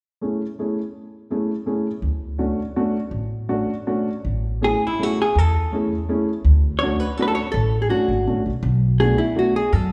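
A charming, whirling musette waltz in A major at 164 BPM, played in 3/4 with a rubato feel and cut from a longer piece. A dark upright piano opens the accompaniment at 0.2 seconds, its mellow, worn tone slightly detuned, with audible action noise adding an intimate, woody character. An acoustic upright bass joins at 2.0 seconds, plucked pizzicato on steel strings, as the harmony moves from Amaj7 to Dmaj7. At 4.6 seconds a clean, picked hollow-body electric jazz guitar takes the melody, its compressed, shadowy tone sitting up front alongside the other parts. A recital hall reverb places the trio further back in a resonant room, and the passage turns toward Bm7 near its close.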